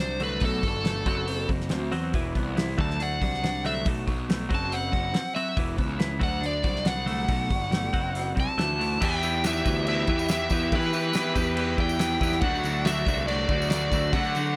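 A straight four-four pulse drives this restless, moody indie rock excerpt, carried by a cloth-damped, thuddy drum kit with a fat snare, tight kick and dark cymbals, and an up-front, punchy picked bass thick with fuzz. Two picked electric guitars hold the riff: one lo-fi and slightly broken-up through a small old amp with subtle chorus, the other a clean, compressed twelve-string sitting in the background with a twangy edge and spring reverb. Above them, an overdriven, biting lead guitar carries the melody. At 9.0 s the harmony settles onto Em and then D, a jingly tambourine joins at 9.1 s, and the room sound stays dry.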